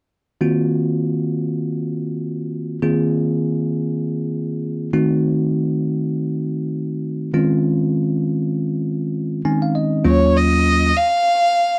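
Jazz with a driving, nocturnal mood, cut from a longer piece. It opens on a bright, bell-like tine electric piano voicing rich minor, diminished and suspended chords up front in a dry, close 1970s-style studio sound. The piano adds a fill at 9.2 seconds before a warm bowed violin enters at 10.1 seconds, carrying a brief, expressive melody with vibrato, soft attack and portamento.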